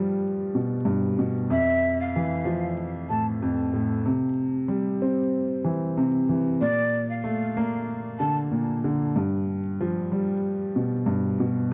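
An up-front upright piano, woody and mellow with a cassette-tape grit, carries this confident hip hop excerpt at 94 BPM with a gentle 16th-note swing, moving through G7, Fmaj7, C and Bbmaj7. From 1.5 to 8.4 seconds a breathy, hollow jazz flute floats in the distance with vibrato and tongued notes, trailed by tape echo. Light reverb, a small-room ambience and vinyl crackle give the whole a dusky, warm finish.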